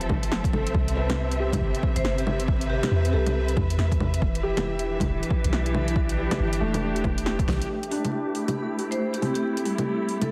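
A sidechain-pumped felt-muted upright piano with audible action noise and tape echo, a rich vibrato string section carrying 12-bit sampler grit, and a soft, round 808-style bass open this nocturnal, wistful future garage cut at 138 BPM with swung 16ths in A minor, alongside an overdriven deep house kit of bongos, metallic hats and fat snare plus a punchy electronic kick, moving from Fmaj7 through Cmaj7 and Em7 to Am7 while a bright hard-mallet vibraphone with analog delay appears from 2.0 seconds, a reversed granular swell drifts in the background, and after a drum fill and band accent at 7.5 seconds the bass and kick fall away as filter sweeps pass over strings and piano beneath vinyl crackle and a dense, heavily limited master.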